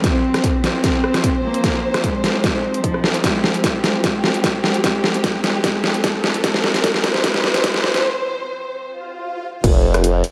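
Half-time 4/4 at 150 BPM drives this chaotic, aggressive heavy wobble dubstep build-up in F minor, where a punchy electronic kick and a dubstep drum kit with a deep snare, hi-hat, rim click and crash play a fill beneath a dark, biting single-player cello melody with digital delay and a lush string section pumping in the background, while a very quiet riser and swell creeps in at 2.2 s, a break arrives at 8.0 s, and a saturated, overdriven formant-sweep wobble bass with chorus lands up front at 9.6 s, all set in a moderate hall reverb.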